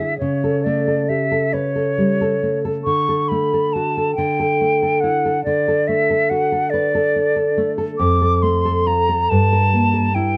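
Solemn and yearning, this romantic duo in D major drifts in a rubato 6/8 at 46 BPM by the dotted quarter, with a pure, hollow concert flute singing the melody up front with vibrato and tongued notes over a woody, full-bodied nylon-string guitar that is thumb-plucked on old strings, both playing throughout the 10.4-second passage cut from a longer piece, as chords move from A7/C# through D to a darkening Fadd11 and Edim/G, all set in light reverb and a dark, warm production.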